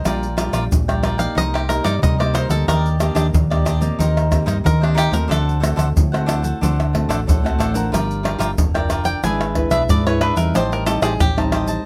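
A straight 4/4 samba-and-choro groove at 92 BPM in G minor, driven up front by tube shaker, pandeiro, tamborim and a tight surdo, carries this playful, lively excerpt from a longer piece. A twangy, percussive bluegrass banjo played with fingerpicks takes the melody as a solo throughout, over crisp picked cavaquinho, a fingerpicked nylon-string guitar with audible finger squeak, and a dark, round, punchy hollow-body electric bass. The harmony moves from Gm7/Bb through Cm7, Ebmaj7 and D7 before landing on Am7b5, all captured with close, detailed microphones and light reverb.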